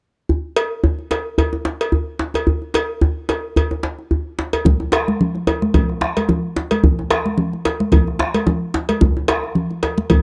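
A medium-tuned djembe sits up front and opens this driving, festive West African drum ensemble passage at 0.3 seconds, cut from a longer piece. A metallic cowbell joins at 0.6 seconds, also close and present, and the pair carry the music at 110 BPM in 4/4 with a gently swung sixteenth-note feel. At 4.7 seconds the second section begins as a deep, dark bombo and bright congas arrive together. The bombo sounds distant, as if set back in a large room, while the thin-skinned congas are close and dry, struck with soft hands. The overall sound is a dry, close studio recording in a 1970s style, with the ambience of a small room.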